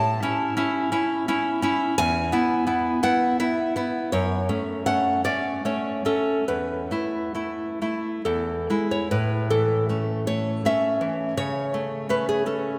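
A bright, fingerpicked nylon-string guitar sits up front in this romantic solo classical piece, unfolding in a flexible, rubato triple metre with a nostalgic mood. Its phrases move through A, E, F#m and a suspended Esus4 before settling back, and a new passage begins at 9.1 s that moves from A to A/C#. A long, wet church reverb surrounds the playing, giving this brief fragment of a longer work a spacious, resonant setting.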